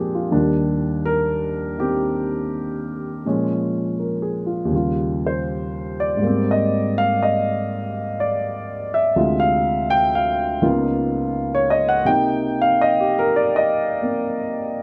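Smoky and swinging, this solo jazz fragment features a dark, mellow grand piano playing alone throughout its 14.8 seconds, with a loose, rubato feel over a gentle swing. Rich chords such as Ebmaj7, Abmaj9, Db13 and Cm9 ring out with long sustain, spanning from the deep low register up into the upper range. The piano sits up front, captured close and in natural detail with a light touch of reverb.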